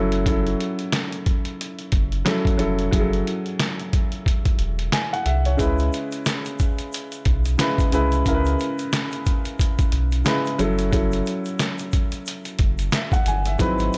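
Boom-bap hip-hop at 90 BPM in 4/4, swung on the sixteenths, with a moody, reflective cast over a short cut from a longer piece. A dark, woody upright piano sits up front, its vintage tone filtered at both ends as it carries the chords from F#m7 to C#m7 and back to F#m7 at 10.6 seconds. Beneath it, a deep sub bass with an octave layer holds sustained, rounded notes with a fast attack. The trip hop sampler-style kit is compressed and pitched down, giving a muffled, thumpy kick, a medium-tuned snare and hi-hat that sound re-recorded in a small room and sit close to the listener. From 5.6 seconds a grainy egg shaker joins in the background, close and dry, while light digital ambience wraps the whole.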